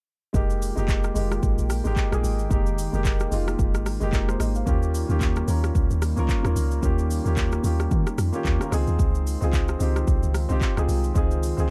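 A dark, warm and dry production opens this short amapiano cut from a longer piece, a late-night, deep groove at 111 BPM in F minor with a lilting swing on the sixteenths, all parts playing together from 0.3 to 11.7 seconds as a drop. A round, percussive log drum bass with a fast attack and a decaying tail sits at the bottom, while an up-front electronic kit of deep kick, smooth hi-hats, handclaps, rim clicks and shaker carries a tape-warm sheen. A warm grand piano accompanies through Fm11, Eb9 and Dbmaj9, and a hollow, flute-like pad with chorus and sidechain pumping hovers mellow in the background.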